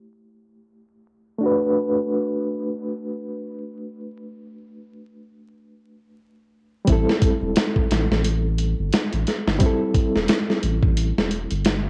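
A dark, cinematic trip hop fragment at 88 BPM in A dorian opens on a barky, reedy electric piano, lightly overdriven and shimmering with fast tremolo, its tone colored by cassette tape and tape echo as it moves from Am7 to Bm7 under a filter sweep. The whole recording has a lo-fi, home-cassette character, with vinyl crackle, a low-pass filter and very little reverb keeping it close and dry. At 6.9 seconds, as the harmony returns to Am7, a dusty soul sampler-style drum kit enters up front, gritty with 12-bit sampler crunch, pairing a thumpy kick and a medium-tuned snare with hi-hat in a swung 16th-note feel. A soft dub sub bass arrives at the same moment, deep and round with a fast attack and sustained notes sitting low beneath the piano. The drums carry a roomy, compressed weight that gives this short cut from a longer piece a heavy, brooding pulse.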